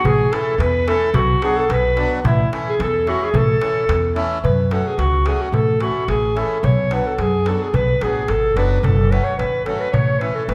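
This is Balkan folk in the manner of a wedding band, wild and exuberant, moving at 109 BPM in a straight 2/4 in A major, tuned slightly sharp to A4 = 444 Hz, and cut from a longer piece. A mellow alto saxophone carries the melody up front with a classical-style solo voice. A clear clarinet plays a second line in the same register, dropping out after 4.2 s and returning at 7.7 s. Underneath, a woody pizzicato upright bass with steel strings sits forward in the mix, a crisp metal-shell darbuka is struck with hard hands, and a reedy, airy accordion fills in the accompaniment. The harmony circles A and B minor before turning toward F-sharp minor at 4.4 s. The saxophone and clarinet both sound distant and roomy, and the whole band is heard from further back in a wet recital hall with a lingering 1.5-second reverb.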